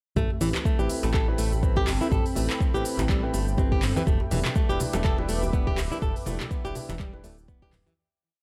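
Earthy and driving, this short afro house piece in A minor runs at 123 BPM with a swung sixteenth feel, moving from Am9 to Em7. A four-on-the-floor electronic kick and a deep house kit of smooth hats, shaker, claps and low toms drive it, joined by a very quiet djembe cross rhythm and by bright, damped congas that enter in the background at 4.3 seconds. A dark, fingerpicked flamenco guitar repeats an arpeggio sequence, and a felt-muted upright piano adds soft, mellow, rootless stabs in dotted rhythms, both through analog delay; beneath them a smooth sawtooth synth bass plays a syncopated riff and a moody, detuned analog pad holds slow-attack chords with chorus, with guitar, piano, bass and pad all pumping against the sidechain in a gritty, dry small-room sound that fades out from 5.4 seconds.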